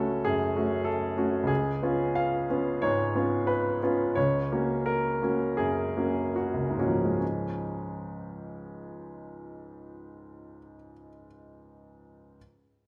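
Hopeful and warm, this fragment of a romantic classical character piece features a clear, natural solo grand piano placed up front, played in a flexible rubato that slows from 0.2 to 7.2 seconds, spanning low bass to upper treble and ringing in a lush recital hall reverb, with a shift to a new passage at 7.2 seconds.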